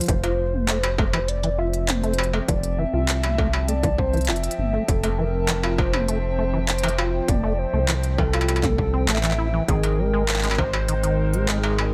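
A glitchy, playful IDM piece in straight 4/4 opens at once with a warbling, detuned lead carrying the melody through chorus, vibrato and digital delay, beside a rubbery, resonant acid bass running arpeggios with a filter-pluck bite and its own digital delay. An up-front industrial drum kit of handclaps, smooth hi-hats and struck metal plays alongside them from the start, along with a distorted electronic kick that stays until 10.7 seconds. Beneath, a round, dark analog bass, colored by tube saturation, holds the low end prominently. From 0.9 seconds, a lo-fi, nostalgic pad of sustained chords sits in the background, softened by chorus, built-in reverb and phaser. The harmony rests on Fmaj7 before shifting to Abmaj7 at 9.7 seconds, all set in light reverb and digital ambience in this excerpt from a longer piece.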